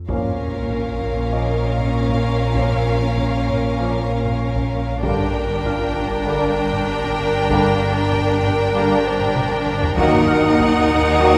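A straight 4/4 pulse at 97 BPM carries this eerie, uneasy suspense film cue, cut from a longer piece, where a deep, ominous rumbling drone is joined on an impact by a very quiet huge sub drop and very quiet hard-stick taiko, and the music moves through Bbm, Gm and Ebm under focused vibrato violins holding the high melody, a sul tasto second violin line, distant violas with portamento, very quiet horn and trombone chords, smooth cellos and double basses in the background, and a bright, ringing thumb-plucked harp entering at 1.3 s, with a taiko fill at 9.4 s, all bathed in a cathedral-like reverb.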